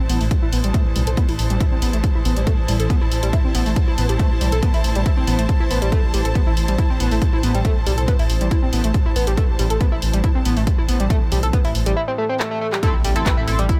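Driving peak-time techno in A minor at 139 BPM, this hypnotic, dark excerpt pits a gritty, screaming overdriven synth lead riff under a filter sweep, with distortion, chorus and dub echo, against a rumbling detuned saw bass, an up-front heavy electronic kick, a techno kit of handclaps and hi-hat, a lush bowed string section that drops out at 12.0 s for a break and drum fill, and an eerie metallic drone in the background, before a nasal oscillator-sync polysynth stab enters at 12.8 s alongside a very quiet impact.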